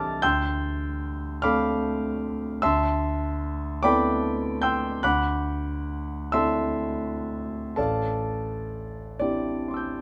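A solo concert grand piano sits up front with an intimate, vintage tone, deep bass and audible action noise, ranging from A1 to A6 in this ten-second passage from a longer impressionist classical piece. Set in A minor and 6/8 at a slow, rubato 41-51 BPM, it drifts through Dm7, Amadd9/D and D9 before settling on Am7 at 7.8 seconds, with a mysterious, nocturnal mood. A moderate large-studio reverb and a dark, warm production give the piano a soft halo of space.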